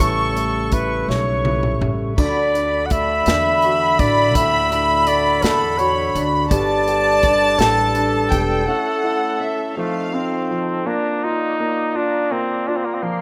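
In a gently rocking six-eight lilt, this romantic, heartfelt pop ballad fragment from a rough home demo sets a clear, vibrato-laden flugelhorn melody with analog delay up front over a floating, sul tasto violin section line, a polished baby grand piano, a dark, lightly overdriven tonewheel organ turning on a slow rotary speaker, a woody pizzicato upright bass and a punchy acoustic drum kit with bright cymbals. The kit plays a fill at 1.1 seconds, and a break follows at 8.7 seconds, by which point the drums and bass have dropped out.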